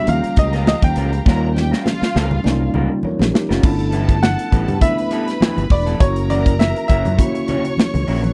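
Lush 1970s-style soul at 101 BPM with a romantic, gently swung 4/4 feel: a clear baby grand piano carries the melody over a smooth, vibrato-rich violin section, a worn, lightly overdriven tine electric piano and a dark, lo-fi guitar riff washed in chorus, while growly, punchy fingered bass, an up-front drum kit with a fill from 1.3 to 3.6 s, and distant soft-handed congas fill out a dry, close studio sound moving from Eb9 through G69 to F#7 in this short excerpt.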